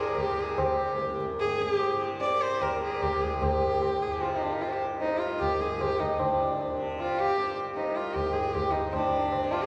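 A nasal, bowed sarangi sings a longing, meditative melody with light vibrato and gliding portamento, set up front over a buzzing, shimmering tanpura drone and a very quiet, reedy pedal harmonium tracing a second line. Low-tuned, ringing tabla joins at 0.2 s in a seven-beat cycle, and the Hindustani performance gradually speeds up, moving into a new section at 6.2 s. The whole ensemble sits in a deep cathedral-like reverb that lends this fragment of a longer piece a spacious air.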